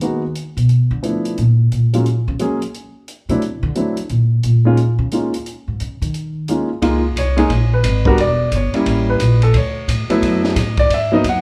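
A woody pizzicato upright bass on steel strings takes the spotlight first, soloing up front from the start until 6.8 seconds in this playful, sophisticated jazz piano trio cut from a longer piece. The tempo is a brisk 176 BPM in 4/4 with a light swing on the eighth notes, and the harmony moves through colorful chords such as Abm7, Gbadd9, D9 and A7b9. At 6.8 seconds the grand piano takes over the solo, its intimate, natural tone sitting close with audible action noise from the instrument. Underneath, a compact cocktail drum kit plays hi-hat, ride cymbal, snare and kick, sounding dark and smooth with a high-tuned snare, a punchy kick and a rolled-off top. The trio plays live in one room, wrapped in a moderate large-studio reverb that gives the performance a warm, cohesive sense of space.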